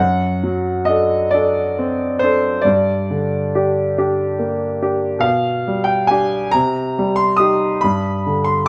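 In a rubato 6/8 feel at 46 BPM, counted in dotted quarters, this fragment of a romantic classical nocturne for solo piano moves through a melancholic, yearning G minor before turning toward C minor from 5.2 s, tuned slightly low at A4 = 437 Hz. The concert grand sounds clear, open and up front, with a deep bass, spanning F#2 to Eb6 as the harmony passes from D7/F# through Gm and G7/B to Cm and a bare G5. A moderate large-studio reverb gives the single piano a sense of space across its 8.7 seconds.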